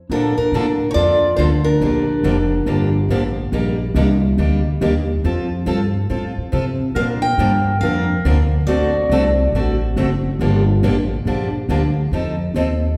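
Lively and charming, this excerpt of acoustic string swing in the jazz manouche style moves at 140 BPM in a swung 4/4 in Bb major. A bright, boxy parlour guitar with fresh strings and audible finger squeak picks the melody while a clear clarinet with light vibrato plays a punchy, forceful second line; both drop out at 3.3 seconds and return around 7.0 seconds. A second picked guitar, up front, carries the accompaniment throughout alongside a woody, growly pizzicato upright bass, and the recording is heard from further back in a reverberant recital hall.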